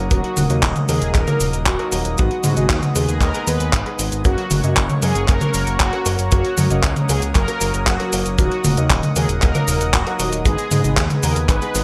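A smooth, chorused analog pad with 12-bit sampler grit, clear grand piano stabs in the background through digital delay, and a fat, detuned sawtooth bass open this playful, sunny italo disco excerpt in F# major at 116 BPM. At 0.1 s they are joined by a round, brassy synth brass melody with vibrato, chorus and delay, an up-front, tape-toned 12-bit drum machine of cabasa, handclaps, hi-hat and toms, and a tight, natural acoustic kick, moving over D#m, G#m and F# chords in light small-room reverb with a bright 1980s-style digital sheen.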